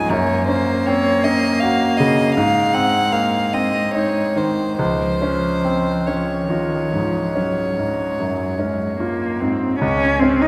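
From the first moment, a bright, brilliant concert grand with deep bass lays down the accompaniment beneath an airy, pure sul tasto violin melody floating close and up front and a warm, intimate cello second line with light vibrato, together forming a tender, serene slow romantic piano trio movement in Db major, in 12/8 at 46-54 BPM with rubato, moving through Gb, Ab and Db in a wet concert hall until the violin stops at 9.4 s in this passage cut from a longer piece.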